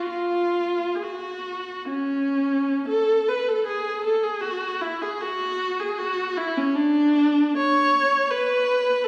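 Classical, yearning and meditative, this 9.1-second excerpt from a longer piece features a single bowed viola playing up front in F# minor in a free, rubato 3/4 between 53 and 85 BPM, its rich, focused tone carried by vibrato from C#4 to C#5 and set in a wet scoring-stage reverb with small-room ambience heard from further back.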